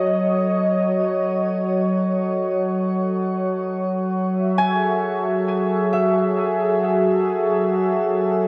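Ambient music in free time and F# dorian, reflective and spacious, where a smooth, detuned analog pad holds sustained chords up front with chorus and shimmer reverb from the start, a nasal, resonant drone with moving overtones sits beneath it from 0.3 seconds, and a ringing, fingerpicked concert harp enters at 4.6 seconds with high arpeggios trailed by dub echo, all bathed in a wet plate reverb and an echo-heavy, dark-topped mix as the harmony moves from F#m6 to F#m7 in this brief cut from a longer piece.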